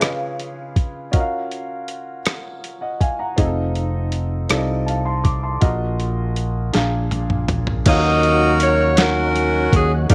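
A boxy, intimate grand piano with audible action noise opens this slow, solemn gospel excerpt in 6/8 at 54 BPM in Eb minor, over a gritty, compressed, pitched-down sampler-style drum kit with a thumpy kick, crash, hi-hat, rim click, snare and toms. A growly, punchy fingered electric bass enters at 3.4 seconds, and a drum fill at 6.7 seconds leads into a fervent new section at 7.9 seconds, where a tight, close-miked jazz-style saxophone section takes the melody up front while a very quiet, lightly overdriven tonewheel organ with chorus vibrato and a slow rotary speaker holds sustained chords. The dry mix stays close, with the chords moving from Db7 through Bb7 to land on Ebm9.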